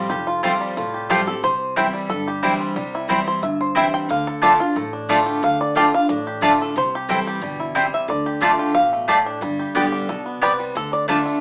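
Lonesome and rustic, this short bluegrass excerpt runs at a brisk 180 BPM in straight 4/4, set in D dorian and cut from a longer piece. A twangy, fingerpicked five-string banjo carries the melody up front and takes a solo across the whole 11.4 seconds, its percussive attack sitting over chords that move from Fadd9 through C and Dm before a turn to G at 9.4 seconds. Beside it, a picked steel-string dreadnought guitar with fresh strings gives full-bodied accompaniment, while a mandolin enters at 0.4 seconds with bright, woody double-string stabs. Down in the background, a gut-strung upright bass plucks thumpy low notes. The band sounds as if playing live in one room, with a short, wet studio reverb and a small-speaker character that keeps the picture close and homespun.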